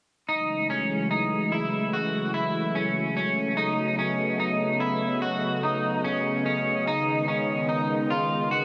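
An up-front electric guitar at the edge of break-up, twangy and picked, plays arpeggios through lush chorus and digital delay over a smooth, warbling analog pad of detuned sawtooth chords with chorus, in a dreamy, blissful dream pop excerpt at 73 BPM in straight 4/4 that moves from F#m9 to B9 at 3.6 seconds and C#9 at 6.9 seconds, all bathed in a wet, lush hall reverb.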